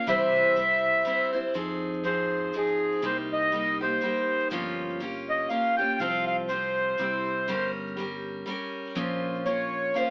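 Reflective and melancholic, this short cut from a longer acoustic folk piece sways in 3/4 at 121 BPM in F minor with a light swing, its reedy, slow-beating accordion up front as the second line and soloing throughout, while a bright, full-bodied picked steel-string guitar accompanies with audible finger squeak. A round, dark fingered electric bass and a grainy, very quiet tube shaker sit underneath as the harmony moves from C through Fm7, Cm7 and Gm7b5 to a closing Bbmadd9. The whole is heard through an AM radio tone in a moderate studio room.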